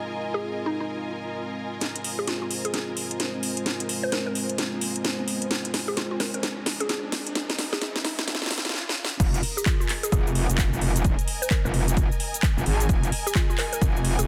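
A swung 130 BPM bass house groove in 4/4 drives this aggressive, bouncy cut in F minor, taken from a longer piece. A moody, detuned analog pad holds sustained chords from the start, pumping against the beat with chorus, while a lush, bowed string section adds vibrato-laden texture. The house drum kit, with a cracking snare, metallic hats, handclaps, shaker and crash, sits up front with overdrive and filtered tones, and a woody, warbling mallet-like synth pluck carries the melody through chorus and digital delay. Through the build-up from 1.8 to 9.2 seconds, drum fills and a background riser gather tension. At the drop at 9.2 seconds, a punchy overdriven electronic kick and a distorted, wobbling metallic FM bass burst in, compressed and pumping. The dense, heavily limited master has light reverb.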